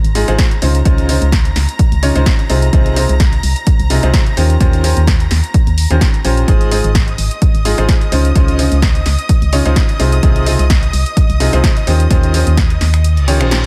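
A smooth, bowed symphonic violin section holds sustained chords high above a dark, hollow FM bass with an organ-like, percussive bite, while a punchy analog drum machine ticks out finger snaps, hi-hat and snare from the first moment. This cut from a longer piano house track is feel-good and joyful, with a gently swung sixteenth-note groove. A clear, slightly worn grand piano carries the riff through delay, cycling through rich chords like Dbmaj9 and Eb13. The piano, bass and strings all pump against the tape-warm electronic kick, which sits up front and punchy in a small-room sound. Near the close the kick drops out at 13.0 seconds, and a reverse cymbal enters in the background from 13.2 seconds, all wrapped in a digital ambience.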